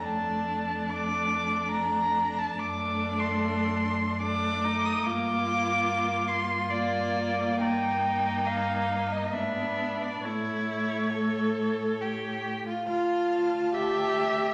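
Melancholic and elegiac, this slow romantic movement for string quartet in 3/4 unfolds with a rubato feel inside a wet recital hall reverb, cut from a longer piece. Up front, the first violin carries the melody with warm vibrato, portamento and expressive phrasing, while the second violin's rich, smooth line stays even beside it. The close viola adds accompaniment with vibrato and sliding portamento, and a quiet cello bass sounds intimate and airy, its soft attack lightly touched by vibrato. The harmony moves from Dm/F through D7/F#, Gm7 and G#dim to A before settling on Dm at 12.9 seconds as a new section begins.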